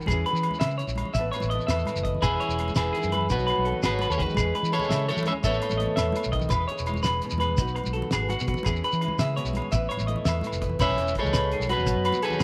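Set in a small room with light reverb, this joyful highlife excerpt in a straight 12/8 pairs a fingerpicked nylon-string guitar, a clean semi-hollow electric guitar playing arpeggios through tape echo, a round fingered electric bass, a dry, damped drum kit with a fat snare, a grainy shekere, ringing agogo bells and bright background congas, while an up-front, slightly broken-up electric guitar carries the melody from 2.2 to 6.3 seconds and again from 10.8 seconds, shadowed by a distant, whispered trombone second line with tape echo.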